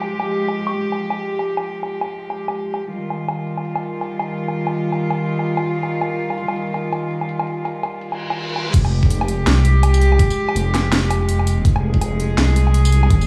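A deep, rumbling detuned saw bass drives the drop at 8.7 seconds, joined by a knocking, overdriven electronic kick, in this tense, cinematic half-time drum and bass cut from a longer piece, at 165 BPM in F minor with a swung feel. Throughout, a close, reedy cello section holds sustained chords over Fmadd9 and Ebadd9 with sidechain pumping and a low-pass filter, while an overdriven drum kit of cracking snare, bright hats, crash, tambourine and woodblock plays underneath. From 8.1 seconds a reverse cymbal leads into the drop, and light digital reverb lends the studio sound a modest sense of space.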